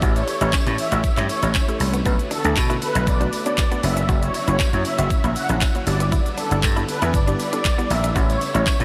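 A knocking pop drum kit of kick, hi-hat, handclaps and shaker opens this bittersweet yet confident dance-pop excerpt alongside a punchy, up-front vintage slap bass pumping underneath, while a hollow, bouncy square pluck and a shimmering string machine of violins sit in the background with a faint, distant tambourine. A very quiet clean electric guitar riff, recorded direct, threads through, and from 0.2 seconds an evolving, detuned supersaw swell carries the melody. Sidechain pumping moves the bass, pluck and strings, and the whole mix is soaked in a huge ambient reverb for a dreamy feel as the chords cycle from A7 through Bm7, F#7 and Em7/G.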